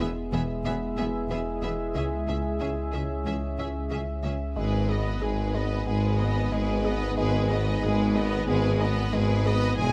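In a straight, steady four-beat pulse, this relentless and vast hybrid orchestral-electronic film cue sets a smooth, lightly vibrato violin melody and second line over lush background violas, a nasal, chorused analog drone, dark and distant French horn chords, a very quiet woody wave-folded pluck spinning arpeggios, and a deep bass foundation of rich cellos, a full sine sub bass, bowed double basses and a solo tuba, all moving through E, C#m and G#m in a close, detailed recording with light reverb.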